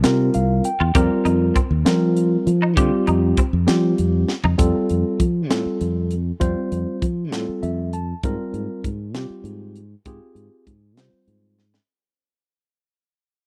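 Set in a straight 6/8 lilt, this slick, bright electric jazz fusion fragment rides on a tight funk drum kit with a high-tuned snare and snug kick, a growly fingered electric bass, and a clean tine electric piano that opens with a fill and moves through suspended and ninth chords. A twangy, compressed electric guitar adds picked stabs washed in ensemble chorus from 0.8 to 4.5 seconds, sitting further back than the up-front rhythm section. After a drum fill, the passage begins fading out at 4.6 seconds, all captured as a dry, close 1970s-style studio recording.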